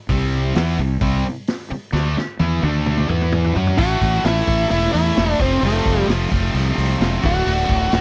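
A dark, fuzzed-out lead guitar takes the melody at 3.8 s, carrying this confident, driving classic rock excerpt into its second half. Underneath, a bright, double-tracked distorted guitar plays a tight riff from the start, while a growly, overdriven fingered electric bass sits up front and fills out the low end. A vintage acoustic drum kit with a punchy kick, medium-tuned snare and mellow, rolled-off cymbals keeps a straight 4/4 at 130 BPM, playing a fill from 1.9 to 3.8 s that leads into the lead guitar's entrance. The chords climb through power-chord shapes from C5 up to A5 before settling on F and then D. The sound is dry and close, like a 1970s studio session with little reverb.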